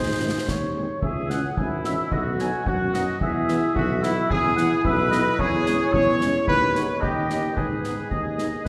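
Resolute and stern, this short cut from a military-style wind band march moves at 110 BPM in a straight 2/4 and settles into G# minor from 5.4 s, with a bright, up-front trumpet section carrying the melody over a mellow woodwind second line, a present tuba bass, a very quiet French horn accompaniment with smooth tone, and close, dry concert snare and bass drum with dark cymbals, all set in the wet reverb of a concert hall or church.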